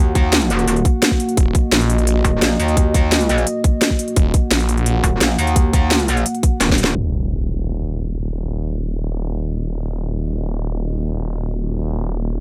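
A dry, low-pass filtered mix carries this dark, mechanical stretch of technical drum and bass, cut from a longer piece, over a deep, moody analog pad whose sustained chords pump with sidechain and shimmer with chorus. Up front sit a tape-warm drum kit with cracking snare and crisp hats, a tight electronic kick, and a bright, metallic FM wobble bass with distortion and chorus, while a growling, detuned sawtooth bass joins at 1.4 s with tube saturation and its own pumping. A drum fill and band accent lead to 7.0 s, where the kit, kick and wobble bass fall away, an electronic impact hits, and a filter sweep runs to the end beneath the pad and snarling saw bass.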